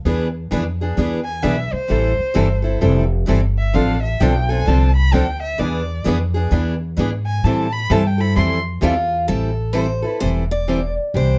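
A dark production with light reverb frames this fiery, bittersweet passage of acoustic string swing in the manouche style, cut from a longer piece. A woody, growly pizzicato upright bass sits up front beside two boxy, picked parlour-guitar accompaniments, one forward and one in the background, while a bowed violin with a soft attack sings an expressive solo rich in vibrato and portamento from 1.2 seconds. At 8.8 seconds a bright, fresh-stringed picked guitar takes the melody, finger squeaks audible, as the music moves into a new section.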